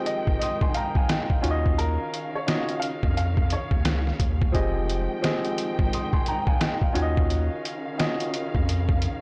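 Boom-bap hip-hop at 87 BPM with a 60% swing, dark and moody, this blown-out, overdriven excerpt cut from a longer piece sets a mellow, up-front upright piano and a brief woody second piano melody with tape echo, heard only until 4.0 seconds, over lush, distant bowed strings with vibrato and portamento, a muffled, pitched-down sampler-style drum kit with a thumpy kick, rim click and hi-hat, and a round, deep analog bass with tube saturation, all moving between Fm9 and Ebm9 in a small room.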